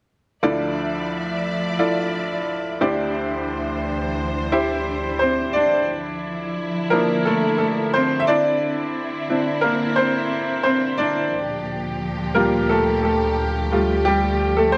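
A straight 4/4 pulse at 88 BPM drives this dramatic pop fragment in D minor, tuned to A4 = 443 Hz, with a brilliant, woody upright piano, worn and slightly detuned, sitting up front alongside a lush bowed string section whose vibrato and smooth top hold sustained chords from 0.4 s. The harmony moves from Dmadd9 to Cadd9/D, and at 5.9 s the piano takes a solo as the chords travel through Gm7/D and Fadd9/D until 14.8 s. A wet, large studio reverb gives both parts a spacious, open setting.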